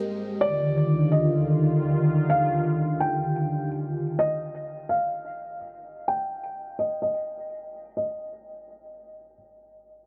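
A half-time 4/4 hip hop groove at 127 BPM sets a floating, dreamy mood in this clip cut from a longer piece, tuned to A4 = 438 Hz. A sweeping, resonant pad of detuned sawtooth and sine tones with a sub octave holds an Ebmaj9 chord up front with slow attack, chorus and a low-pass filter, ending at 4.2 seconds. A filter sweep runs through the first 8.0 seconds, and a felt-muted upright piano carries the melody between D5 and G5 until 9.3 seconds, sounding soft, dark and intimate, with audible action noise and tape echo, all set in light reverb.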